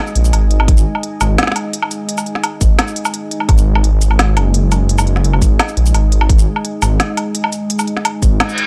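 Cinematic and spacious, this half-time drum and bass excerpt at 171 BPM rests on a deep, moody ambient pad of detuned sawtooth chords with chorus, built-in reverb and sidechain pumping, while a rumbling, saturated detuned saw bass sits up front from 0.2 seconds. A tight, layered electronic kick enters at 0.7 seconds over an organic electronic kit of woody snare, smooth hi-hats, shaker and woodblock. A reverse cymbal arrives at 8.5 seconds near the cut, and the whole recording carries a dry, gritty hardware character with transformer saturation.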